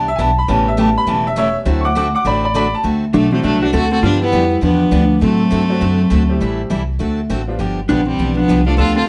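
This is a swinging, playful western swing number in a country vein, moving at a brisk 202 BPM in 4/4 with a light swing on the eighth notes, set in D mixolydian and cut from a longer piece. It opens with an up-front upright piano solo, bright and brilliant with long sustain, supported by a full-bodied picked dreadnought acoustic guitar with fresh strings and a thumpy, woody pizzicato upright bass on steel strings. At 3.1 seconds a clean electric lap steel takes the melody, dark and compressed, played with a slide and fingerpicks and shaped by volume swells. Alongside it, a single clear, close, focused bowed fiddle adds a second line with light vibrato. The harmony moves through dominant sevenths such as A7, D7 and G7, with a brief Am7 before landing back on G7. A moderate studio reverb gives the band a sense of room, and the top end is softly capped.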